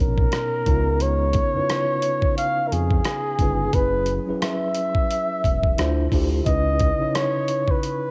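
R&B and neo-soul in C# dorian at 88 BPM with a swung sixteenth feel, this smooth, introspective fragment of a longer piece sets a breathy, whispered flugelhorn melody up front with vibrato and a soft attack over a mellow tine electric piano, clean and heard as if through built-in speakers, moving from Bmaj7 and C#7 through F#7sus4 and Dm9 to C#m9. A sustained sawtooth-and-triangle synth bass with ring modulation and vibrato holds the low end until 7.1 seconds, while a dusty, sampler-style kit enters at 0.2 seconds with a thumpy kick, hi-hat and rim click, its compressed, gritty sound pushed forward. Moderate spring reverb gives it the intimate feel of a home cassette recording, with tape colour on the keys and drums.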